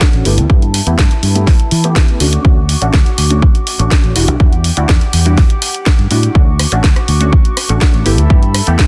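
Sunny and funky, this short cut of filtered disco house at 123 BPM in D major rides a filter sweep across its full length, with a punchy, up-front electronic kick, a house kit of hi-hat, rim click and cracking snare whose hats pump to the sidechain, a fingered electric bass with a direct-and-amped tone, a detuned sawtooth polysynth comp shimmering with chorus and phaser, and a bright, earthy chamber string section holding sustained chords, all moving through G69, Dmaj7 and Em9 in a dense, heavily limited modern mix.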